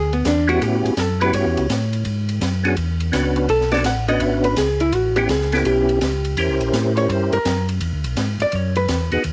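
Soul jazz organ trio at a swinging 167 BPM in a greasy, soulful mood, with a mellow, lightly overdriven tonewheel organ bass line through slow rotary speaker and chorus vibrato, a second, percussive tonewheel organ carrying the round, clean melody from 0.5 s, a dark, compressed hollow-body archtop guitar soloing throughout, and an acoustic drum kit with a boomy kick, high-tuned snare and shadowy cymbals, all captured as a home cassette recording in a small room.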